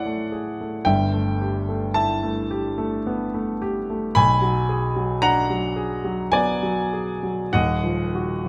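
Closely and intimately recorded with light reverb, this hazy, dreamy fragment of impressionist classical music features a warm, present solo grand piano placed up front, drifting in a rubato 3/4 at roughly 50-57 BPM through lush Amaj7, G69, Bm6 and D#madd9 harmonies over its 8.5 seconds.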